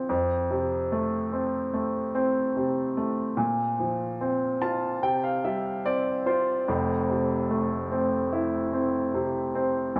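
A polished, up-front grand piano carries this heartfelt pop excerpt on its own, ranging from deep bass notes up into the upper register over a steady, straight pulse. Moving from F through Bbsus2 and Csus4, the piano plays a fill from 4.2 s before settling on Fmaj7 as a new section opens at 6.7 s. Dub echo trails the piano's warm, present tone, and a wet spring reverb with small room ambience gives the emotional mood an echo-heavy sound.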